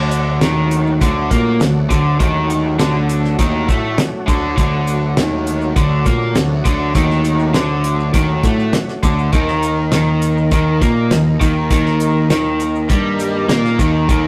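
Heard as a rough rehearsal-room recording with tube saturation and a moderate stone-room reverb, this short cut from a longer psychedelic rock piece moves at 101 BPM in a straight 4/4, with a dark, hypnotic mood. A bright, overdriven electric guitar, picked, double-tracked and compressed, sits up front playing a low riff over D before the harmony turns to an Eb5 chord at 9.3 seconds. Beneath it, a fuzz-laden picked electric bass adds a warm, overdriven low end, while a damped 70s drum kit, dry and up front, drives hi-hat, a tight kick and a fat snare. A thick, gritty overdriven tonewheel organ holds sustained chords through a slow rotary speaker with chorus vibrato, sitting lower in the balance. Very quiet, grainy maracas add a mellow, close shimmer to the groove.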